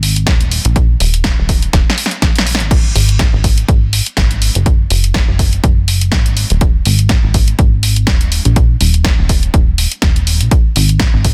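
An up-front electronic kick drum, punchy and tape-warm, anchors this bittersweet, soulful piano house excerpt, entering at 0.3 seconds and driving the 4/4 groove with a light swing on the sixteenths. Beneath it, a plucky analog bass built from sawtooth and pulse waves gives a dark, funky line with a fast attack, a decaying filter pluck and a moving notch, all pumping against the kick through sidechain compression. An analog drum machine supplies a punchy snare, hi-hat and crash cymbal with a tape-warm character, and it breaks into a drum fill between 1.7 and 2.7 seconds. The sound is dry, with little reverb, and the master is dense and heavily limited in a modern style.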